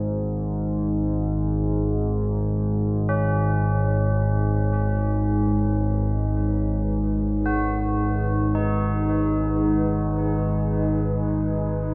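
Dark ambient drone in free time, cavernous and dark, where a warbling, wave-folded analog drone sits up front from the start with chorus, a deep, detuned pad of sustained chords with chorus and its own reverb enters at 2.9 s, and solemn, ringing tubular bells play arpeggios through tape echo from 3.1 s, all bathed in a wet cathedral reverb in this fragment cut from a longer piece.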